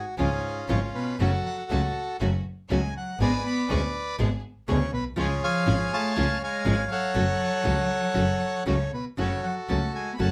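A rubato feel stretches and pulls at the 4/4 metre in this sultry, dramatic tango, a short passage cut from a longer piece. A dark, reedy bandoneon carries the melody up front, with an airy edge to its tone, while a distant, bowed cello sings a second line beneath it, expressive with vibrato and portamento. From 0.2 seconds a fingerpicked nylon-string guitar adds warm, classical accompaniment, and a single bowed double bass anchors the low end, close and up front, its sound biting, nasal and earthy with a light vibrato and an airy bow. A bright, lush studio string section punctuates the texture with intense, bowed stabs from the background. The harmony moves through C#, F#m, G#dim, C# and back to F#m, all set in a moderate studio ambience.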